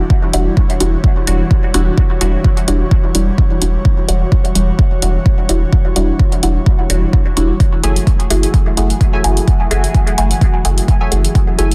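An airy, breathy pad and a muted, filtered dub chord stab open this hypnotic, hazy excerpt of dub techno, both breathing with sidechain pumping as they sit on an Em9 chord in E dorian. The pad is soft and mellow with a slow attack, long release and chorus. The detuned stab carries a phaser and dub echo. An up-front, overdriven electronic kick drives the 128 BPM groove in 4/4 with a light swing on the 16ths. Beneath it, a round, soft sub bass adds depth with its own sidechain pumping, and a layered, overdriven hi-hat re-recorded in a small room fills out the beat. At 7.6 seconds the harmony moves to F#m9, and at 7.8 seconds a crisp, digital wavetable chord stab with dub echo enters in the background to carry a quiet riff. The mix is dry and dense, with a heavily limited modern master.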